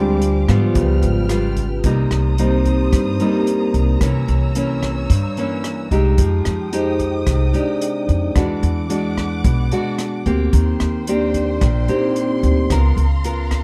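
A straight 4/4 bossa nova pulse at 110 BPM in C minor sets an intimate, melancholic mood, with a small-room jazz kit playing hi-hat, rim click and a boomy kick under a woody, thumpy pizzicato upright bass that sits up front. A breathy, mellow trombone with light vibrato offers a brief phrase in the background until 1.5 seconds, while a full-bodied, fingerpicked nylon-string guitar with audible finger squeak holds the accompaniment up front and a distant, lush violin section sustains chords behind it. From 1.8 seconds the ringing, airy vibraphone, played with soft mallets and a fast motor vibrato, takes a solo over harmony moving from Cm7 to Db13, set in light reverb with a dark, warm production.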